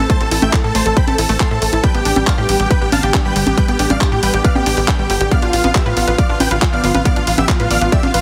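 A punchy, up-front electronic kick and a house kit of congas, handclaps and hi-hat drive a straight 4/4 pulse at 138 BPM in this euphoric uplifting trance cut, where a tight sawtooth sequencer bass with tube saturation and a huge, thick, detuned supersaw melody with cassette-tape grit and dub echo sit over a lush pad treated with chorus and phaser, a background unison pluck playing arpeggios and a catchy plucky unison lead as a second line, every part apart from the drums pumping to the sidechain over Am moving to G at 1.8 seconds, with little reverb and a heavily compressed, radio-like sound.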